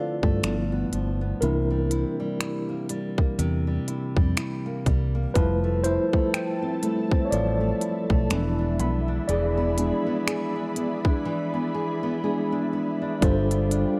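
A mellow tine electric piano takes the lead over fingerpicked nylon-string guitar in this longing, moody contemporary R&B excerpt, joined by a dark, foam-muted fingered bass and a trap kit of finger snaps, crisp hats and a hard-clipped kick, while an ethereal, airy pad enters at 5.9 seconds and a soft, round pluck with chorus and analog delay glimmers in the background before the drums drop out at 11.3 seconds, all captured in a dry, gritty recording.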